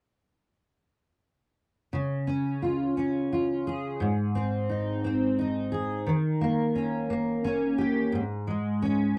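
A fingerpicked, double-tracked jumbo steel-string acoustic guitar sits up front with a full-bodied tone, playing accompaniment from 1.9 to 9.2 seconds. This swaying, heartfelt pop fragment in 6/8 moves through Db, Ab and Eb7 before settling on Db5/Ab. The dry, close 1970s-style studio sound carries a light reverb, and the passage is cut from a longer piece.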